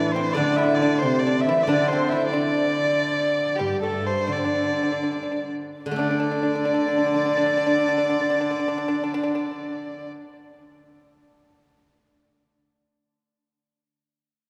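A long, wet church reverb surrounds this short piece of Chinese traditional chamber music, lending its pastoral, graceful mood an airy spaciousness. A clear, biting erhu carries the melody with light vibrato and earthy portamento. A bamboo dizi with a buzzing membrane adds a second line from the background in the same register, its straight tone pure and its attack crisp. Beneath them, a single bowed cello sits up front with a rich, floating sound played sul tasto, while a fingerpicked pipa adds a percussive second line in the background. A bright, silvery steel-string zither rings out in accompaniment, dropping away at 3.6 seconds and returning at 5.9 seconds. The rubato flow in 2/4 slows between 3.0 and 6.0 seconds, and the zither rings on alone after the other parts fall quiet.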